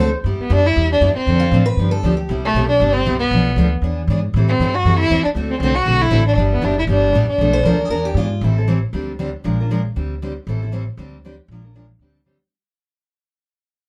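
A brisk swing at 235 BPM in 4/4 carries this charming, playful jazz manouche passage in G major, tuned to A4 = 436 Hz and cut from a longer piece. A pizzicato upright bass with gut strings sits up front throughout, its tone woody and thumpy, while a full-bodied jumbo guitar, also up front, plays picked chords from start to finish through changes such as G6, Dm7, G7, Cmaj7, Bm7b5, E7, Am7 and D7. A single bowed violin takes the melody from 0.4 s, singing with vibrato, portamento and a soft attack, and its plate reverb lends the expressive line a gentle sheen. A boxy parlour guitar adds brief, bright picked second lines at the opening and again from 7.5 s, with a touch of finger squeak. The production is dark and warm with light reverb, and from 8.4 s a fade-out carries the band through a sequence of Am7, D7sus4 and Bb7 chords.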